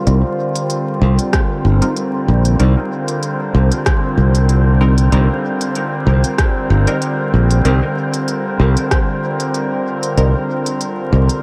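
A warbling, detuned tape-like pad holding sustained chords with chorus and reverb opens this deep, spacious ambient dub excerpt at 95 BPM alongside an airy, wind-like tuned noise layer, soon joined by a growly, bright fingered electric bass up front, an organic electronic kit of smooth hi-hats and rim clicks, muted filtered dub chord stabs with phaser and echo in the background, and a tape-warm deep electronic kick from 1.3 to 9.1 seconds, all over a bed of vinyl crackle and light digital ambience.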